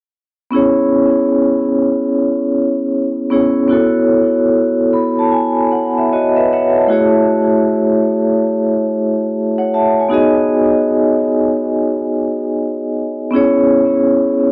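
Worn, warbling cassette tape colours this short hip hop excerpt, its pitch drifting beneath a wet studio reverb with a decay time of 0.6 seconds. A lone vibraphone struck with medium hard mallets plays from 0.5 to 14.5 seconds, sitting up front with a metallic, ringing tone that is also dark and smooth, shaded by a slow motor vibrato, a low-pass filter and an analog delay. The mood is melancholic and nostalgic, moving at 75 BPM in 4/4 with a 65% swing on the sixteenths, in C# minor tuned to A4 = 439 Hz. The harmony passes through C#m7, B9sus4, F#m9 and G#m7 before returning to C#m7, with the vibraphone ranging from A3 to B5. A vibraphone fill stands out at 4.5 seconds, running until 6.9 seconds as the chords shift toward F#m9.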